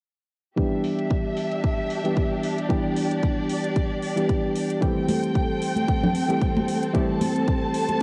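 A swung sixteenth-note nu-disco groove built on a punchy, tape-warmed electronic kick and metallic, filtered hi-hats carries this cosmic, sensual fragment, where a reedy, up-front electric piano with tape echo moves through a filter sweep over Em7 and Am7, a lush, bowed violin section with vibrato pumps alongside it, and bright, hard-handed congas recorded in a small room join at 5.1 seconds.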